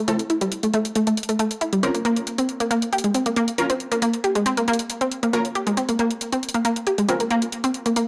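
A straight 4/4 pulse drives this intense, gritty slice of peak-time techno: a round, detuned analog pluck riff sits up front from 0.0 seconds under a filter sweep, thick, aggressive rave stabs with sub-octave weight, phaser and chorus sweep through their own filter, and an overdriven electronic hi-hat runs throughout, all captured in a dry hardware sound with light reverb.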